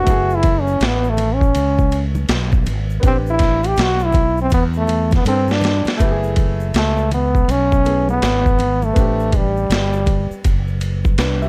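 Hip hop in a jazz-hop vein with a nocturnal, cool mood at 81 BPM in F# minor, swung on the sixteenths: a punchy, forceful trombone with scooped notes leads up front and solos through the first 6.0 seconds, over a gritty, pitched-down boom bap sampler kit with a thumpy kick and high-tuned snare that plays a fill from 5.3 seconds, a round, dark fretless electric bass, an intimate vintage grand piano with audible action noise in the background, and dry, hard-handed egg shaker and congas, in a short cut from a longer piece with little reverb.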